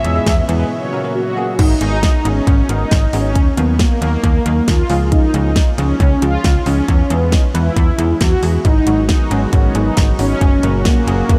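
A straight 4/4 pulse at 136 BPM drives this melancholic, nocturnal synth-pop fragment in G# minor, with punchy electronic drums (a fat snare, kick, hi-hat and crash) sitting up front beneath a snappy, metallic FM slap bass. A round, brassy synth lead carries the melody, its detuned sawtooth tone colored by a filter sweep, vibrato and chorus and trailed by diffuse ambient delay, while a bell-like, clean tine electric piano accompanies with analog chorus. A smooth, detuned analog pad holds chords through the opening and a short break at 0.7 seconds, then returns at 8.6 seconds as the harmony cycles back to G#m7, the whole dreamy mix soaked in a huge ambient reverb.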